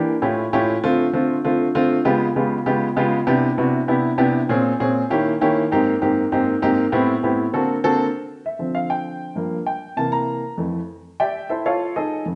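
Jazz at a brisk 197 BPM in straight 4/4, this fiery, driving fragment of a longer piece features a solo baby grand piano that stays up front throughout its 12.4 seconds. The piano's tone is natural with a short sustain, ranging from F2 up to Bb5, and it sits in a wet stone room with a 1.2-second reverb that gives the sound a live, in-the-room character, its top end rolled off above 10.7 kHz. The opening stretch moves restlessly through rich harmony, including A7b13, C#7#11, Cmaj9, Eb7b9 and Abmaj9, before settling into D minor at 8.2 s. From that point the piano takes a solo over a new section built on Dm9, Gm7, C7 and Fmaj13, closing on an F7alt that leaves the phrase hanging.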